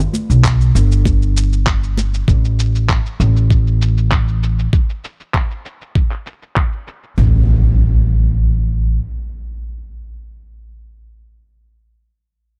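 This sunset chillout clip, cut from a longer piece, opens with an upright bass and a layer of electronic shaker and handclaps, setting a smooth, relaxed mood at 98 BPM in a straight 4/4. The bass sits up front, plucked pizzicato on steel strings with a woody, growly tone low in its range. Bright, close congas played with hard hands appear only at the very beginning, and a compressed, thumpy electronic kick joins at 0.4 seconds with a tape-warm, sampler-style grit. The shaker and handclaps share that compressed, gritty, tape-warm character, sitting low in the mix behind a low-pass filter and a filter sweep. At 7.2 seconds an up-front electronic impact takes over as the beat drops away, and the bass rings on until 9.0 seconds in a dry, gritty small-room sound.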